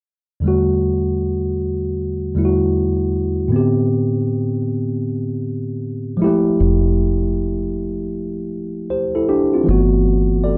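Sultry and introspective, this short R&B excerpt swings gently at a slow pace as a worn, slightly out-of-tune tine electric piano lays down lush extended chords from Em11 through Am11 and Fmaj9 to Gmaj13, joined at 6.6 seconds by a deep, round, foam-muted fingered dub bass sitting up front in a dark production with light reverb.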